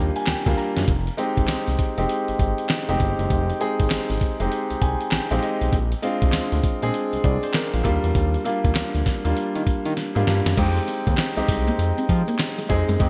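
Confident and bouncy, this short cut from a longer new jack swing R&B piece rides a swung sixteenth-note groove in 4/4 with a bright 1980s-style digital sheen and light reverb. An intimate concert grand piano with audible action noise and deep bass carries the accompaniment up front from the start, opening with a fill and adding another at 4.5 seconds as the chords move from Ebmaj7 to Fm9 and on to Bb7. Beneath it, a smooth synth bass blends sawtooth and square tones with a fast attack, saturation and vibrato, sustaining and evolving underneath. A gritty, compressed sampler-style drum kit with a thumpy kick, fat snare, hi-hat, handclaps and crash sits up front, re-recorded in a large room and treated with gated reverb, and it plays a fill just before the change at 10.6 seconds. There, as the harmony returns to Fm9, a dark, clean electric guitar enters in the background with a fingered, compressed riff coloured by ensemble chorus.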